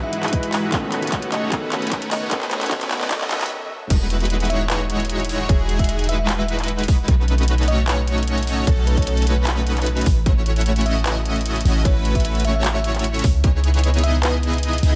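A half-time 4/4 pulse at 151 BPM drives this lush, bright future bass excerpt in E major, with a hard-clipped, up-front electronic kick and a tape-toned trap kit of metallic hats, handclaps and crash cymbal. The opening build-up pairs a drum fill and a very quiet riser with a filter sweep on the huge, thick, detuned supersaw riff, which runs throughout with cassette-tape color, a low-pass filter and sidechain pumping. Early on, a soft felt-muted upright piano accompanies in the background while a very quiet, ethereal granular pad holds sustained chords, and a sparkling FM electric piano carries the melody with chorus, tremolo and digital delay. After a brief break at 3.5 seconds, the drop lands at 3.9 seconds, bringing in a deep, boomy 808-style bass and an airy, dreamy lead playing arpeggios with chorus, vibrato and delay. The harmony moves through Emaj9, B9, F#m7/A and C#m9 beneath light reverb and a high-pass filter on the whole mix.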